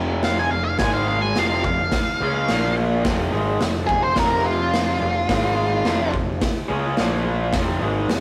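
A bright, double-tracked overdriven guitar riff and a punchy, fuzz-soaked picked bass open this menacing, gritty garage rock excerpt in F minor at 107 BPM, with a saturated acoustic drum kit of hi-hat, kick and snare arriving up front at 0.2 seconds, its pumping room sound and rolled-off top adding weight. A dark octave-fuzz lead guitar rides over the top with a distorted, picked solo line that sits highest in the mix until 6.1 seconds, while the chords cycle between F5, Ab5, Bb5 and Fm. A moderate stone-room reverb and a rough rehearsal-room sound with warm saturation give the whole excerpt its rawness.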